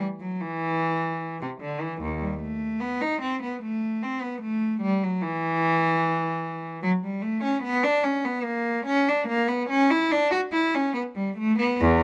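Captured by close, detailed microphones with light reverb, this solemn, flowing excerpt from a baroque-style suite movement features a single unaccompanied cello, bowed up front with a reedy, gut-string period tone, unfolding in a rubato triple metre for its 12 seconds.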